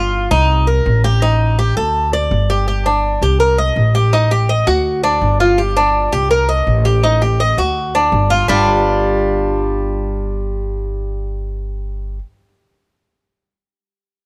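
A picked Cuban tres leads this danceable, sultry excerpt of Cuban son and guajira, its metallic double strings, some doubled at the octave, spinning arpeggios up front from start to finish. A woody, dark upright bass with steel strings plays pizzicato beneath it throughout, and light reverb surrounds the pair. The straight 4/4 groove cycles through Cm7, Ebmaj7#11/A and D before resolving to G5, with fresh sections arriving at 2.7 and 8.5 seconds in this fragment of a longer piece.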